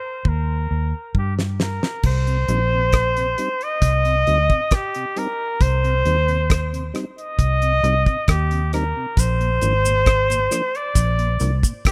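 A laid-back, meditative roots reggae groove in straight 4/4, cut from a longer piece, opens with a clear flugelhorn carrying the melody with vibrato and tape echo, joined moments later by a drum fill on a damped 70s kit with a fat snare and dark cymbals and a round, foam-muted fingered electric bass up front. A mellow tonewheel organ enters at 2.3 seconds in the background with chorus vibrato and a slow rotary speaker, and a close cabasa joins at 9.2 seconds. The rough home demo mix sits in a small room ambience as the chords move from Eb to Cm and on to Bb.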